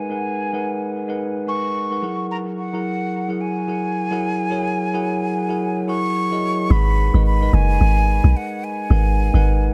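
Swung sixteenth-note amapiano with a late-night, soulful mood opens with a breathy concert flute singing the melody over bell-like tine electric piano chords, both filtered and trailed by dub echo in a reverb-soaked mix, until the drop at 6.7 seconds brings in a deep, round log drum bass that hits up front in this short excerpt from a longer piece.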